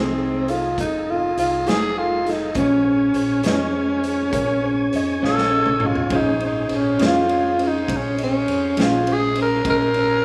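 A rough home-demo mix with light reverb and small-room ambience carries this brooding, soulful slow blues excerpt in 12/8 at 68 BPM in Bb minor, where a growling, breathy tenor saxophone leads up front over a slightly broken-up electric guitar with tremolo, a mellow tine electric piano, an overdriven tonewheel organ on a slow rotary speaker holding sustained chords, a deep, round fingered dub bass, and a raw, saturated garage drum kit that enters at 0.5 s and plays a fill at 5.2 s, while a woody upright piano adds a brief second line with digital delay from 3.5 s.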